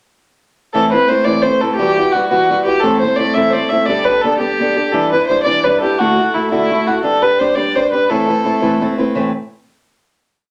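Celtic folk jig in A dorian at 114 BPM in 6/8, driving and wild, where a dark, woody fiddle with light vibrato bows a motif-based melody from 0.7 to 8.8 seconds over a fingerpicked parlour steel-string acoustic guitar strumming eighths in open chord shapes with fresh-string brightness, boxy body and finger squeak, both up front in a wet small room, moving from Amadd9 through Emadd9, Gadd9, Em7 and Dadd9 back to Amadd9 before a final chord at 9.1 seconds.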